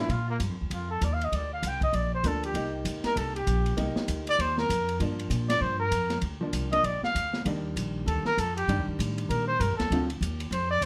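A mellow, roomy trumpet solos up front through this late-night, smoky swing-and-bop excerpt in G minor at 196 BPM, carried by woody, thumpy pizzicato upright bass, a clean, compressed hollow-body jazz guitar that sounds briefly at the very start and then accompanies from 2.2 s, and a small-room acoustic drum kit with dark cymbals, a high-tuned snare and a boomy kick, set in light reverb as the chords move from Gm7 through Cm7 and Ebmaj7 to D7#9.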